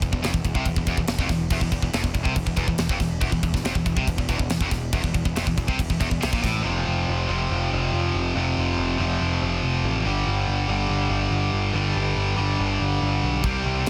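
A double-tracked, high-gain distorted guitar drives this heavy, epic heavy metal excerpt at 141 BPM, its bright, picked riff moving from an Fmaj7(no3)/E chord to F5 at 6.6 seconds and G5 at 10.1 seconds, with a growling, overdriven picked electric bass underneath throughout. A tight, polished drum kit with bright cymbals, a tight kick and an airy big-room sound plays crash, kick and snare up front until 6.5 seconds, then drops out before returning at 13.4 seconds. The mix is dense and heavily limited, with light reverb.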